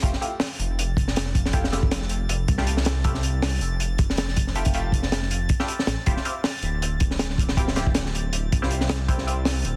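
Drum and bass in a jungle vein with a nostalgic, raw mood, this short excerpt from a longer piece pairs a crunchy, saturated breakbeat kit with a punchy kick and high-tuned snare, a deep, rumbling detuned saw bass that sits up front, and nasal, band-passed chord stabs smeared with phaser, lush chorus, cassette tape and dub echo, moving from Fmaj9 to Dm11 at 6.1 seconds, while a glassy, drifting harmonics texture enters in the background at 0.6 seconds under a small room, a dense modern master and vinyl crackle.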